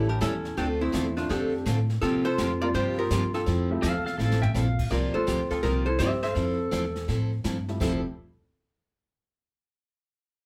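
Country western swing at 166 BPM in F major, this short, playful and down-home clip swings its eighth notes in 4/4 over a band playing live in one small, reverberant room. An up-front archtop guitar carries the melody with a dark, clean, hollow-body tone, while a breathy clarinet with light vibrato and a mellow subtone adds a second line. A woody upright bass sits prominently beneath, and a bright, full-bodied dreadnought acoustic guitar and a detuned, jangly honky-tonk upright piano fill in the accompaniment. The piano sits in the background, drops out at 5.3 s and returns briefly at 7.7 s. A jazz brush kit with dark cymbals and a boomy kick keeps time and adds a drum fill at 4.2 s. The chords move from A7 and Dm7 through C7sus4 to Fmaj7, then C7sus4 and Fmaj9, and from 3.8 to 4.8 s a twangy pedal steel guitar, played with fingerpicks and volume swells, adds a brief slide line over the Fmaj7.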